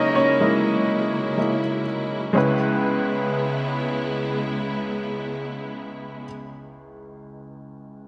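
A bright, slightly detuned upright piano with woody action noise and slapback echo opens with a solo in free time over an F#7 chord, supported from the start by a clear studio string section playing sustained, vibrato-rich chords. At 2.4 seconds the harmony moves to C#m7, and the strings hold until 6.3 seconds before the piano carries this bittersweet yet driving pop fragment on to 8.1 seconds, all set in a lush hall reverb with a big arena sound.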